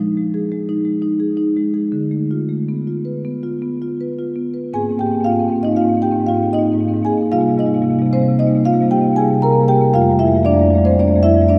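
A solo marimba played with soft mallets carries this short contemporary classical fragment, its rosewood bars giving a woody, round, mellow tone that sits up front in the sound. The music flows in 5/4 with a rubato feel, drifting between roughly 106 and 119 BPM, and rests in Ab lydian, reaching from F2 up to Bb5. The harmony moves from Fm7 to Dm6 in the opening passage, then shifts at 4.7 seconds into a second section built on Ab69, Cm7 and F69. A cathedral reverb with a long 5.1-second tail surrounds the instrument, placing it in a resonant church or concert hall space. The mood is warm and flowing, and the piece is cut from a longer work, running 11.6 seconds.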